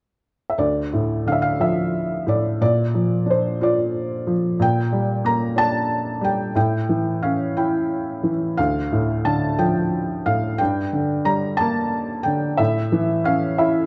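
Classical solo piano in D minor, this dark, melancholic excerpt moves at 60 BPM in 6/8 with free, rubato phrasing, as a felt-muted upright piano plays alone from 0.5 seconds to the end, its soft, intimate tone sitting up front with short sustain across a range from D2 to Bb5. The harmony turns through Dm, Bb, Gm/Bb and A before circling back via Dm, Gm and A, while a moderate recital hall reverb and a dark production give the muted felt sound a hushed, mellow glow.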